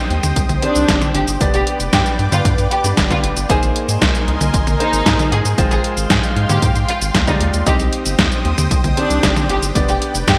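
A thick, detuned sawtooth pad with chorus and phaser opens this bittersweet, danceable 115 BPM italo disco passage in C minor alongside brilliant baby grand piano stabs, joined almost at once by a round, deep analog bass and a tape-warm 8-bit drum machine whose cabasa, hi-hat, snare and toms sit up front in gated reverb, then a punchy electronic kick at 0.4 seconds and, from 0.6 seconds, an expressive violin section melody carrying vibrato, 12-bit sampler grit and digital delay, all set in a lush hall with bright 1980s-style digital production and vinyl crackle over a Cm, G, Abadd9 and Fmadd9/Ab progression.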